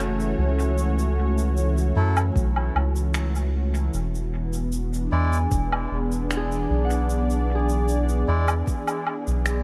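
Vinyl crackle and light reverb frame this hazy, deep ambient dub fragment, where a detuned sawtooth analog pad with chorus holds dark, smooth chords moving from F#m7 to E7 over a round, soft sub bass sitting up front. Shaker, woodblock and finger snaps with a rolled-off top and dub echo enter at 0.2 seconds. Reedy, breathy melodica stabs, also treated with dub echo, arrive at 2.0 seconds, and an overdriven electronic kick joins at 2.4 seconds. A mellow, thumb-plucked Celtic harp rings in the background with tape echo, sounding at the very start and returning with arpeggios from 5.3 seconds.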